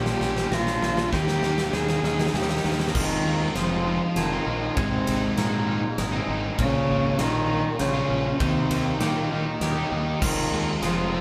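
A straight 3/4 pulse at 99 BPM drives this brooding, cathartic post-rock passage in F minor, cut from a longer piece, where a big rock drum kit with a punchy kick, fat snare and bright cymbals rolls through a fill during the build-up before the main section lands at 2.9 seconds. Up front, a dark, bowed cello sings the melody with expressive vibrato and portamento, while a fuzz-driven fingered bass anchors the low end and a crunchy overdriven guitar shares a riff with a thick, very quiet fuzz guitar. Beneath them, a compressed clean electric guitar and an airy, bell-like glockenspiel struck with soft plastic mallets ripple arpeggios over Bbm, Eb, Fm7 and Abadd9, all bound together by a live-room sound and wet studio reverb.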